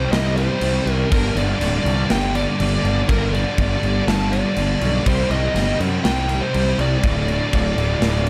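Heavy metal at 122 BPM in a half-time feel, this heavy, aggressive excerpt moves through Cm, Gm and D, with a dark, distorted high-gain lead guitar carrying the melody over three riffing guitars: a bright overdriven one and a double-tracked, scooped high-gain one sitting in the background, plus a very quiet tight distorted part. A growly, fuzz-laden picked electric bass sits up front, while a tight metal drum kit enters at 0.1 s with crash cymbal, a tight kick and a medium-tuned snare, sounding polished and airy with bright cymbals. The whole is set in a small room with a dark production.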